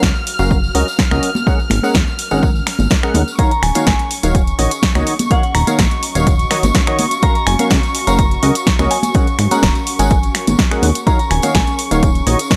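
A dry, gritty hardware sound with a digital ambience frames this energetic, bittersweet piano house excerpt, cut from a longer piece and moving at 125 BPM in 4/4 with a straight feel in Eb minor. Up front, an overdriven electronic kick and a punchy analog drum machine with finger snaps, hi-hat and snare drive the groove, while tambourine and congas add an acoustic, small-room layer underneath. A plucky, funky analog bass with a ring-modulated, evolving sawtooth edge and a hollow, organ-like percussive stab riff both pump against the kick, the stab carrying an analog chorus. Above them a muted chamber violin section holds dark, veiled con sordino chords high in the register, and a very quiet granular cloud pad adds a blurred, bright haze from 0.2 seconds. A soft, pure FM synth bell with a warbling vintage tone, treated with chorus, phaser and analog delay, carries a short melody from 3.4 to 11.8 seconds as the harmony moves from Gbmaj7 to Ebm9, back to Gbmaj7, then through Ab9sus4 and home to Ebm9.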